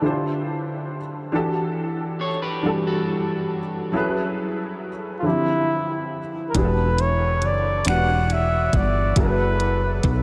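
Sultry and late-night, this slow six-eight R&B excerpt at 46 BPM opens on an intimate baby grand piano with audible action noise and ensemble chorus, moving through Dm11, Em11 and F#m11 chords, as a dark, slightly broken-up electric guitar with spring reverb adds a brief picked second line at 2.2 seconds, a vibrato-laden flugelhorn with scooped notes and tape echo takes the melody from 5.2 seconds, and an electronic drum kit of finger snaps, hi-hat and soft kick arrives at 6.5 seconds alongside a growly, round fretless bass, all inside a dreamy mix soaked in huge ambient reverb.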